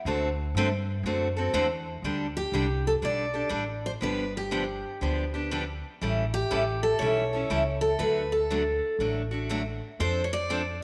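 Swinging and lively, this short cut from a longer piece of acoustic string swing in the jazz manouche style moves at 121 BPM in 4/4 with a firm swing on the eighth notes. A picked steel-string acoustic guitar carries the melody from the very start, its fresh-stringed dreadnought tone bright, full-bodied and up front. A second picked steel-string acoustic guitar, a concert model with its own bright, up-front tone, plays the accompaniment beneath it, while a pizzicato upright bass on gut strings adds a woody, dark, thumpy foundation. After a brief opening passage, the harmony moves at 2.0 seconds from Dsus4 through G7, A7 and D, landing on F6 at 10.0 seconds. A wet echo chamber reverb with a long tail gives the trio a roomy, resonant sound.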